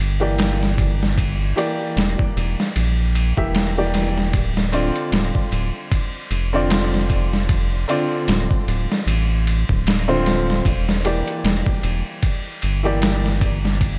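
A woody upright piano, colored by harmonic tremolo, 12-bit sampler grit and tape echo, opens this melancholic, cinematic trip hop piece over a deep, round analog bass with a filter pluck and tube saturation. At 0.4 seconds a dusty, overdriven soul drum kit joins with a thumpy kick, a medium-tuned snare, hi-hat and ride, all captured in a small room. The parts swing gently through Em7b5, Dm7 and back to Em7b5 under a light digital ambience, in a passage cut from a longer piece.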